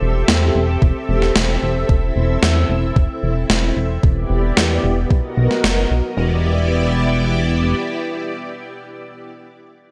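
Synthwave in E minor at 112 BPM, moody and driving, built on lush string machine chords that carry a filter sweep through the first 6.2 seconds along with steady sidechain pumping. A glossy chorused synth bass with a pulse-wave pluck holds the low end until 7.7 seconds, while a thumpy sampler-style electronic kick and a gated-reverb electronic snare sit up front with a tape-warm, small-room character. The harmony moves from C6/E through Am/E and Em7 to Bmaj7 before settling back on Em7, and the strings hold alone until 9.3 seconds to close this excerpt.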